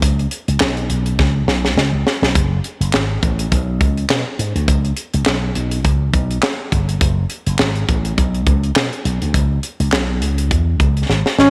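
A growly, punchy slap bass run through an envelope filter drives this danceable, slick early-eighties boogie funk excerpt with a swung sixteenth-note feel, joined up front by a tight acoustic drum kit with a high-tuned snare, handclaps, hi-hat and kick that plays fills at 1.2 and 11.1 seconds, before a breathy, raspy alto saxophone enters at 11.4 seconds in the final moment, with the mix set in light reverb and small-room ambience.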